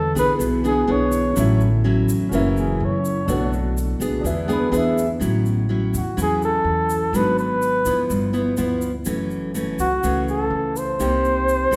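Heard in the wet reverb of a recital hall, this breezy, sunny bossa nova fragment moves at 124 BPM in A major, with an up-front flugelhorn taking a mellow jazz solo full of vibrato and scooped notes over fingerpicked nylon-string guitar, woody pizzicato upright bass and a grainy, close egg shaker. For the first 5.2 seconds an intimate grand piano with audible action noise adds accompaniment while an ethereal, chorused pad hovers in the background. Both then drop away, leaving flugelhorn, guitar, bass and shaker to carry on through chords such as G#m7b5, G6 and Cm7.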